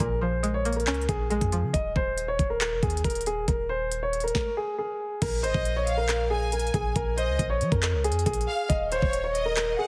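A half-time 4/4 trap groove at 138 BPM drives this eerie, dark hip hop fragment in Bb minor, with an up-front, overdriven drum kit of knocking kick, sharp snare, crisp hi-hats, handclaps and crash cymbal, recorded again in a small room, over a deep, boomy, sine-like 808-style bass. A mellow, vintage baby grand piano carries the melody with long sustain and digital delay, while a twangy, nasal resonator pluck with chorus adds accompaniment only until 1.7 s over Bbm7, as the harmony moves to Ebsus4. At 5.4 s a rich studio violin section with vibrato enters as a second line, also treated with delay, just after the harmony shifts to Bb7 with the third omitted and before it moves to Eb5, all under light reverb and a heavily compressed, radio-like finish.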